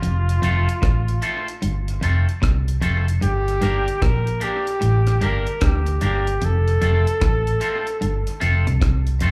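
A clear flugelhorn carries the melody in this short cut from a longer live roots reggae performance, its vintage, pop-style solo tone marked by vibrato and a punchy attack and trailed by dub and slapback echo until 8.8 seconds. Underneath sits a dark, round, foam-muted fingered bass, amped and up front, with a dry, smooth reggae drum kit whose tight kick, rim clicks and hi-hat also sit close in the mix. A semi-hollow electric guitar plays a low, compressed, hollow-body riff in the background, dressed in spring reverb and slapback echo. From 0.4 seconds a bright, twangy, cleanly picked electric guitar adds accompaniment, with its own dub and slapback echo. The groove is laid-back and hypnotic at 75 BPM in 4/4 with a swung sixteenth feel, moving from F to Gm and back to F. Heard through the venue's PA, the sound carries club reverb and a trace of lossy compression artefacts.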